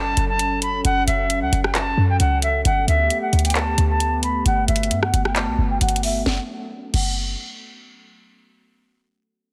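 Hip hop in a trap style, this short, half-time excerpt carries a menacing, eerie mood over chords moving from F#m to Gadd9. A silver concert flute leads the melody up front, its pure, metal tone softened by rolled-off highs, with vibrato and tongued, expressive phrasing sent through a low-pass filter and delay. Beneath it, a warbly tape-like pad holds sustained chords in a lo-fi, nostalgic haze, its detuned sawtooth and triangle layers blooming with a slow attack through chorus and built-in reverb. A short 808-style bass sits punchy and tight, a sine tone with a noise layer and fast, decaying attack, while an electronic trap kit enters at 0.2 seconds with a sharp snare, metallic hats, handclaps, rim clicks and a crash cymbal. A filter sweep runs through the opening until 6.3 seconds, where the harmony drops away and the pad fades moments later, leaving flute, bass and drums to close out a dense, heavily limited modern mix with light reverb.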